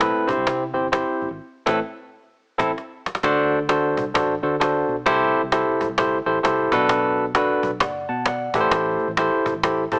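A small-speaker, lightly reverberant studio sound frames this driving, urgent slice of uptempo 1960s-style soul with a swung feel, where a bright, barky tine electric piano with light overdrive through a combo amp sits up front over a dark, round, foam-muted fingered bass and a woody, close cajon struck with hard hands, the band hitting accents from 1.4 to 3.2 seconds, the cajon filling at 2.8 seconds and the electric piano adding a closing fill at 9.6 seconds.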